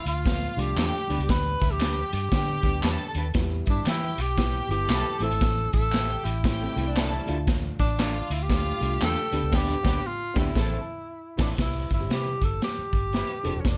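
A swung 4/4 groove at 117 BPM drives this short cut from an uptempo 1960s-style soul piece, with a driving, passionate mood. The raw garage drum kit sits up front, gritty and saturated with a punchy kick and rolled-off top, while a dark, foam-muted fingered electric bass rounds out the low end. A tambourine-and-handclap layer, heard distant in a large room, adds group claps and shaker until 9.4 seconds. Over the progression from Dm through G, Em and Am to a closing Cmaj7, a breathy, whispered tenor saxophone carries the intimate, jazz-style melody, while a lush bowed violin section plays a smooth second line with vibrato until 11.5 seconds. In the background, a boxy, slightly detuned upright piano comps, one twangy electric guitar through a small old amp adds stabs, and a second lo-fi guitar plays a riff from 6.6 seconds. The band plays a shared accent from 9.5 seconds up to the final chord change, all under light reverb.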